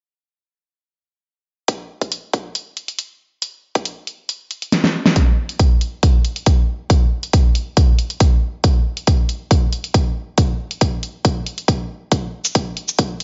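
A half-time 4/4 groove at 138 BPM drives this menacing, aggressive heavy wobble dubstep, cut from a longer piece, with a punchy, layered electronic kick and a big-room dance kit of hi-hat, shaker and a huge snare both sitting up front from 1.7 s. A drum fill at 4.7 s leads into a build-up from 5.2 s, where a filter sweep runs through to the end. The kick and kit carry studio reverb within a filtered digital ambience, and a second fill closes the passage.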